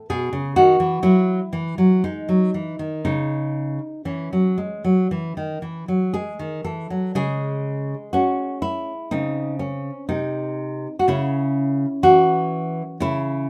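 A solo nylon-string guitar opens this short cut from a longer classical piece, a radiant, dance-like baroque-style number in C# minor, fingerpicked at a slow 58-63 BPM in 4/4 with a free, rubato feel. The full-bodied guitar sits up front in light reverb, moving from a rootless A chord through Esus2 and G#5 to settle on C#m. A second phase begins at 7.1 seconds, passing through C#5 and a darker Cm before returning to C#m by 13.5 seconds.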